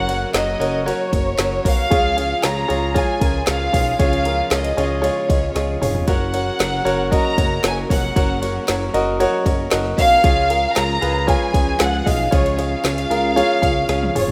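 A straight 4/4 deep house groove at 115 BPM, with a deep kick, woody snare, smooth hats, handclaps and fills near 5.6 and 13.9 seconds, drives this uplifting piano-driven pop excerpt in F# major, where a dark, bowed violin section carries the melody over clear, up-front concert grand piano accompaniment, a glossy, chorused synth bass, very quiet lush sustained strings and a faint, twangy twelve-string electric guitar riff, all in a rough home demo mix with light digital reverb.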